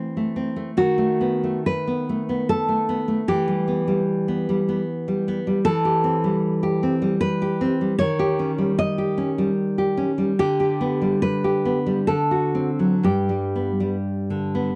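In a rubato 3/4 that drifts between 58 and 78 BPM, this elegiac, melancholic romantic duo for two nylon-string guitars is a brief passage cut from a longer piece. The harmony begins in E minor and turns to G major at 5.6 s, moving through colorful chords such as F#m7b5/E, B7/D# and Eb7 before settling on G at 13.0 s. One fingerpicked nylon-string guitar carries the melody in the higher register, its fresh strings giving it a warm, full-bodied tone. The second nylon-string guitar, also fingerpicked, supplies the accompaniment from a lower range, dark and deep classical in character, sitting up front and a touch louder than the melody. Both guitars play throughout the 14.8 s, captured in a dry, close 1970s-style studio sound with light reverb.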